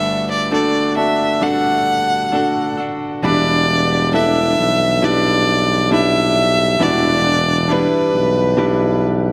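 Pop ballad at a slow 68 BPM in a hopeful, tender mood, where an up-front solo violin sings a rich, bowed melody with vibrato over clear concert grand piano chords moving from D/G to Em7, a bright, clean electric guitar picks arpeggios in the background, and a vintage-toned tuba enters on the bass at 3.2 seconds, all in light studio reverb in this excerpt from a longer piece.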